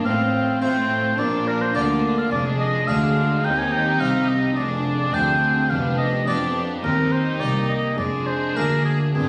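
Driving and dramatic, this brief excerpt of a baroque-style concerto movement moves at 106 BPM in a straight 4/4, with a clear oboe, up front and singing with vibrato, carrying the solo melody from 0.1 s over period-style, gut-string sections. Rich violins share the melody from the background and play a second line, a dark, distant viola section fills in the accompaniment, and a reedy double bass joins a nasal cello section in the bass, while a close-miked, brilliant harpsichord with three sets of strings plucks a dry, full accompaniment. The performance sits in a moderate recital-hall reverb captured on a phone in the room, passing through chords such as Bb, Cm/Eb, Ddim/F and G7/F.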